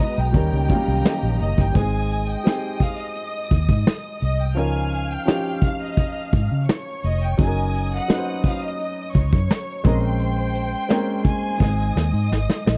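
A straight 4/4 groove from a muffled, small-room brush kit with a punchy kick and a round, foam-muted electric bass drives this lush, dry 1970s-style soul excerpt, where a clear, biting studio violin section carries the melody over a smooth, symphonic second violin line and natural baby grand piano, while a clean tonewheel organ with chorus vibrato and key click sounds only until 1.7 seconds and a drum fill closes from 11.6 seconds.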